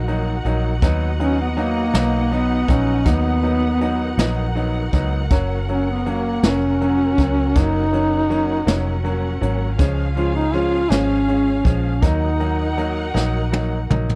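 This six-eight pop ballad moves at a slow 54 BPM in a dramatic, aching mood, cut from a longer piece and recorded with little reverb. A mellow duduk carries the melody up front, its soft attack, scooped notes and vibrato giving it a folk-style, solo voice until it stops at 12.9 seconds. Beneath it, a lush, distant studio string section holds bowed, expressive chords, while a clear, woody upright piano adds natural-sounding accompaniment. A dark, round, foam-muted electric bass sits up front with an amped tone, and a jazz kit played with brushes gives a boomy kick, a medium-tuned snare and a rolled-off top in a roomy, small-room sound. The harmony moves from Ebm through B, Gb and Db before returning to Ebm at 12.0 seconds, and a drum fill closes out the final moment from 13.1 seconds.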